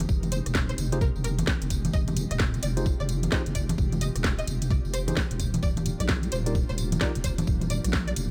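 Moody and late-night, this 130 BPM two-step UK garage excerpt in F dorian swings over a knocking electronic kick and an up-front kit of cracking snare, metallic hats, congas, rim click and tambourine, while a deep wobbling bass rumbles beneath an airy, breathy pad pumping in the background, a twangy string-like resonator pluck carries the melody through tape echo, and a bright tine electric piano adds clean delayed stabs from 0.9 to 7.1 seconds as the harmony moves from Fm9 to Ebmaj9 at 5.4 seconds.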